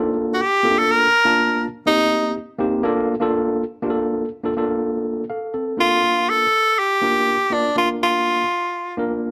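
A moderate club reverb gives this short soul excerpt the feel of a club setting, with both instruments placed up front. The mood is joyful and warm, set in a straight four-four groove. A tine electric piano carries the accompaniment from start to finish, its worn, slightly out-of-tune tone lightly overdriven and heard as if through its own built-in speakers while it moves between major-seventh and minor-seventh chords. An edgy tenor saxophone takes the solo melody in a punchy pop style, marked by vibrato, entering at 0.3 seconds for a brief phrase and returning at 5.8 seconds. Between those phrases the piano holds the music on its own before the horn comes back for the closing stretch.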